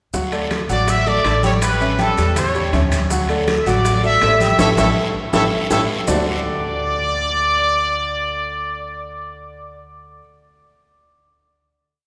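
A straight 4/4 salsa groove at 162 BPM in D major drives this joyful, sunny piece. Woody upright piano montuno in octaves and a thumpy pizzicato upright bass tumbao sit under a bright, tight trumpet section playing a motif-based melody. Congas, ringing timbales, raspy guiro and grainy maracas sit in the background alongside very quiet high-tuned bongos, until a band accent and drum fill lead to a final D chord at 6.1 s that hangs in a wet church reverb until 10.2 s.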